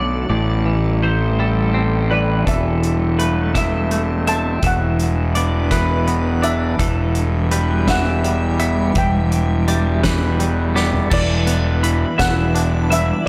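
A slow, straight 6/8 sway carries this brooding, cathartic post-rock passage, cut from a longer piece, where a growly fuzz bass sits up front beneath a twangy tremolo-and-delay guitar in the background, chiming twelve-string guitar arpeggios with lush chorus, and a calm organ-like pad with phaser, while a mellow steel pan melody with slapback echo enters at 2.1 seconds and a roomy, distant indie drum kit with a fat snare arrives at 2.5 seconds, playing a fill near 10.8 seconds within a big arena-scale reverb.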